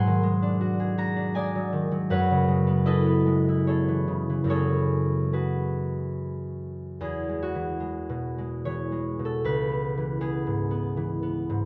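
A concert harp plays alone from the first moment, its fingerpicked notes ringing up front through close, detailed microphones and light reverb across a range from C#2 to B#5. This serene, dreamy classical solo in E major moves at 74 BPM in 3/4 with uneven, rubato beats, passing from G#7#11 to F#m11 before a new section at 7.0 s settles on E69 and then C#m7. The passage is cut from a longer piece and runs 11.7 seconds.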